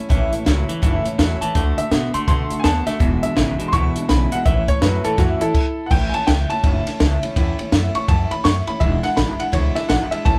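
Rowdy and rollicking, this swung rockabilly cut puts a twangy clean electric guitar riff over a full-bodied jumbo acoustic guitar, a thumpy gut-string upright bass and a compact cocktail kit with a punchy kick, high-tuned snare and dark cymbals sitting up front, all playing live in one room with light reverb. A clear upright piano with audible action noise carries the melody from 1.4 seconds over changes moving from A to D and E7. The band stops at 5.5 seconds, and the piano launches into a solo at 5.9 seconds.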